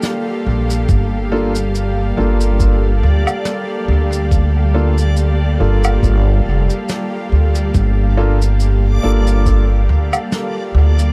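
Spacious and meditative, this ambient dub excerpt in G minor drifts at 70 BPM with a lightly swung feel, resting on a single Gm7 chord as a dark chamber string ensemble holds soft, bowed chords beside mellow upright piano stabs trailing dub echo. A woody pizzicato upright bass sits up front from 0.5 seconds, joined at 0.9 seconds by a muffled, overdriven, pitched-down electronic kick, while brushed shaker, high-tuned snare and woodblock from a small room carry their own dub echo. From 1.6 seconds a reversed, detuned granular texture swells in the background, bright and dreamy in its own reverb.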